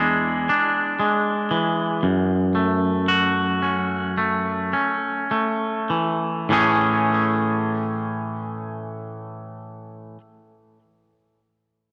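A lone twangy electric guitar opens the recording, playing clean, fingered arpeggios in a slow, hopeful rock style with a cinematic sweep. Sitting up front in the mix, the guitar ranges from E2 to G#4 and carries a digital delay, while a wet plate reverb with a long tail surrounds it. The harmony moves from E7 to F#m7 in the opening passage as the pace slows down over the first 6.5 seconds. At 6.5 seconds the music settles onto an Amaj7 chord, opening a second section. The guitar stops at 10.2 seconds, leaving the reverb to ring out in this brief passage cut from a longer piece.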